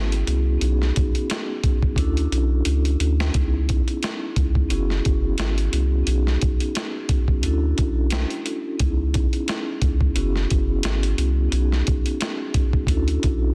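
A gritty, pitched-down sampler-style drum kit with a thumpy kick and medium-tuned snare sits up front in this moody, tough boom-bap hip-hop excerpt at 88 BPM in C# minor with a light swing, rolling into a drum fill from 2.0 to 3.3 seconds, while a deep, round sine sub bass holds sustained notes beneath and a mellow, metallic vibraphone played with soft mallets rings through a fast motor vibrato, cassette tape colour and high- and low-pass filtering in a boxy small room, cycling through F#9sus4, B69, Dmaj9 and C#m9 chords under a dense, heavily limited modern master.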